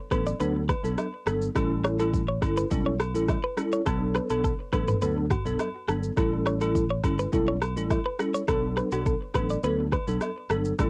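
A straight 4/4 afrobeats groove rolls along on an electronic, produced afro-pop drum kit, its deep kick sitting up front alongside rim clicks, shaker and toms, all carrying a cassette tape tint. The mood is smooth and hypnotic, with the harmony circling between Bm7 and A7 across this short excerpt cut from a longer piece. A bell-like tine electric piano, bright and up front, lays down the accompaniment with ensemble chorus, cassette tape and plate reverb. A clean, twangy electric guitar recorded direct plays a picked, compressed riff in a higher register, colored by cassette tape and tape echo, and drops out at 10.6 seconds. Underneath, a fingered electric bass holds a warm, direct low end, while a quieter layer of agogo bells and woodblock adds saturated, acoustic texture set in a moderate booth ambience with a homemade cassette character.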